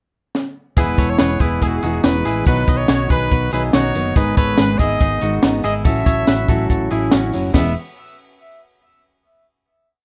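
Youthful and nostalgic, this short jangly indie pop piece in E major at 142 BPM opens with a compact cocktail drum kit entering at 0.3 seconds and playing a fill from 0.4 seconds, its high-tuned snare and tight kick driving a brisk backbeat. At 0.8 seconds a clear, close-miked trumpet with light vibrato enters with a motif-based melody of call phrases, over full-bodied fingerpicked steel-string acoustic guitar, a twangy, ringing clean electric guitar figure doubled in thirds and washed in spring reverb, round, punchy eighth-note fingered bass and a jingly tambourine in the background, all in a rough home demo mix that settles on a final E chord at 7.5 seconds.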